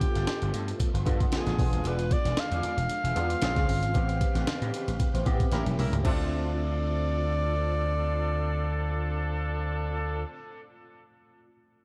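A swung sixteenth-note groove in four drives this slick, urban slice of polished 1980s jazz-funk pop, cut from a longer piece. Up front, a gritty, compressed, pitched-up sampler-style breakbeat kit with a thumpy kick and high-tuned snare sits beside a punchy, amped slap bass, while very quiet, low-tuned congas with hard hands add close acoustic color. A breathy, whispered alto saxophone carries the intimate lead melody, backed by a worn, slightly out-of-tune tine electric piano with ensemble chorus and a twangy, slightly broken-up picked guitar riff in the background. A very quiet, swirling sawtooth string machine with a phaser holds soft-attack chords underneath, over rich extended harmony. During a band accent, a tight, clear horn section with light vibrato and tape echo enters at 5.5 seconds alongside a drum fill. The drums and congas drop out around 6.2 seconds, leaving the electric piano to ring on until 11.8 seconds in a dark, dry production.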